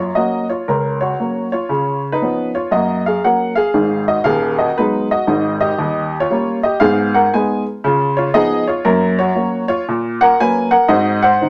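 A woody, slightly detuned upright piano plays alone and up front with long sustain, carrying a swinging, exuberant stride jazz passage with a swung eighth-note feel, set in moderate studio reverb and cut from a longer piece at 11.5 seconds.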